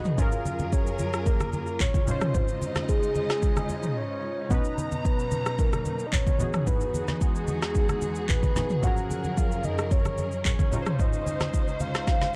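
This amapiano excerpt moves at 111 BPM in a straight 4/4, led by an up-front deep house drum kit whose deep kick, woody snare, handclaps, rim click, shaker and toms carry a vintage 12-bit sampler grit, while bright, low-tuned congas sit close and dry in the background from 0.2 seconds. The mood is soulful and relaxed, with chords of F#maj9, C#maj9, Bmaj9 and Emaj9 cycling beneath a soft, octave-layered synth lead whose round triangle-and-sine tone, sub octave and vibrato are colored by chorus, phaser and delay. Analog keys sit in the background with a detuned sawtooth sound, a filter sweep and a fast, decaying attack, treated with chorus. A bowed studio string section holds sustained chords with vibrato, portamento and a smooth top, its ensemble sound shaped by sidechain pumping. A brief break arrives at 4.0 seconds and a drum fill lands at 12.1 seconds, all set in light digital ambience with a dark production character.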